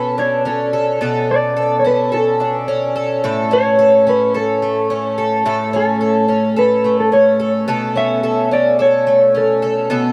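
Hazy and ethereal, this dream pop excerpt drifts at 108 BPM in a straight 4/4, cut from a longer piece. A fingerpicked twelve-string acoustic guitar sits up front with shimmering, octave-doubled arpeggios, its boxy archtop tone thickened by lush chorus and tape echo. Over it, a mellow electric guitar carries the melody in a dark, clean, fingered voice, colored by phaser and tape echo. The electric guitar stops at 9.7 seconds, leaving the acoustic to ring on until 10.1 seconds. The harmony moves from Bm9 to A and then to B9sus4, and a long, lush hall reverb wraps the whole passage in a soft, wet haze.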